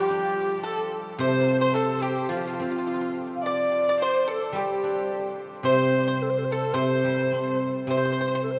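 Graceful and pastoral, this short excerpt from a longer piece of Chinese traditional chamber music moves in a rubato 2/4. An airy bamboo xiao carries the melody with tongued notes and lifted highs, while a single clear, smooth bowed erhu with light vibrato and portamento shares the second line with a bright, percussive pipa played with fingerpicks. Beneath them, an up-front guzheng gives silvery, ringing accompaniment in its low register, all heard in a church or concert hall with a long cathedral reverb.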